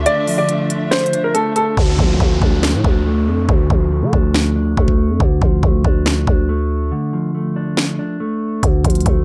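A half-time trap groove at 140 BPM in 4/4 drives this melancholic, dark hip hop fragment in D minor. The electronic kit pairs a knocking kick and sharp snare with finger snaps and crisp hats, with breaks at the start and again from 6.9 seconds, and the hi-hats fall silent from 1.8 to 8.6 seconds. A growling, buzzy 808-style bass sits up front throughout, while a mellow, clean electric guitar, fingered and compressed behind a low-pass filter, supplies steady accompaniment. At the opening a clear concert grand piano carries a brief melody through low-pass filtering and tape echo, over lush, woody bowed strings holding sustained chords on Dmadd9. Both stop at 1.7 seconds, and at 1.8 the harmony settles on Dm while a faint electronic downlifter sweeps through the middle stretch alongside the band. The production is dry and gritty, colored by transformer saturation and a digital ambience.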